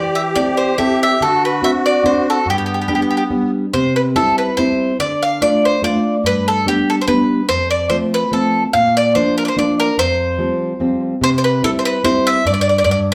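A bright, picked bowl-back mandolin carries the melody up front with plate reverb, joined from the start by a reedy, shimmering musette accordion second line and a dark, full-bodied fingerpicked nylon-string guitar accompaniment in this lively, romantic Italian folk serenade at 144 BPM in 3/4 with a light swing. The accordion drops out at 3.5 seconds, and at 3.7 seconds the music moves from G major to C major, as mandolin and guitar carry on together. Heard from further back in a small, reverberant room with a faint mains hum, this excerpt is cut from a longer piece.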